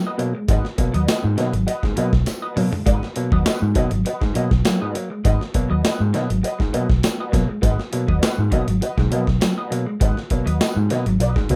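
A wah-tinged electric guitar at the edge of break-up opens this driving, cool funk excerpt in G# minor at 101 BPM, joined almost at once by a dark, background guitar riff with tremolo, mellow, stringy clav stabs and an up-front, gritty breakbeat kit with a thumpy kick and a drum fill at 2.3 seconds, while a round, foam-muted vintage bass enters at 0.5 seconds and a jingly tambourine sits far back, all starting on a G#m7 chord in a moderate reverb and a rough home demo mix.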